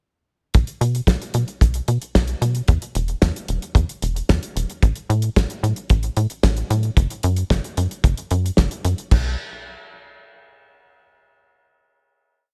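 A dry sound carries this complete Italo disco piece at 112 BPM, melodramatic yet danceable. An up-front, nasal sequencer bass with a sawtooth and square-wave filter pluck and tube saturation drives octave-jumping lines from E1 to B2. Alongside it, a damped, warm 70s drum kit with a fat snare, closed hi-hat and crash and a tight four-on-the-floor kick play a disco machine beat before the piece closes on a final note from 9.1 to 11.3 seconds.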